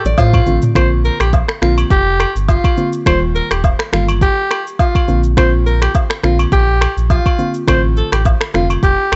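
A raspy alto saxophone leads this sunny, romantic afrobeats excerpt, its bright, vibrato-laden pop-style solo sitting up front yet sounding distant and roomy through a tape echo. Beneath it, a deep, full sub bass with an octave layer pairs sine and triangle tones with a fast attack and sustained notes, while an electronic, produced afro-pop drum kit with a deep kick, finger snaps, rim click, shaker and toms drives a 104 BPM groove with a light swing on the sixteenths. Acoustic woodblock and agogo bells, joined by maracas and group handclaps, add a vintage, band-limited shimmer lower in the mix. A soft, round pluck with a darker, decaying filtered tone and chorus enters at 0.5 seconds and holds the harmony until 8.8 seconds, moving from F6 through Bbadd9 and Ebadd9, then back to Bbadd9 and F6 in B-flat major. The whole excerpt carries the dry grit of a cassette recording in a small room, its top end dulled and hazy.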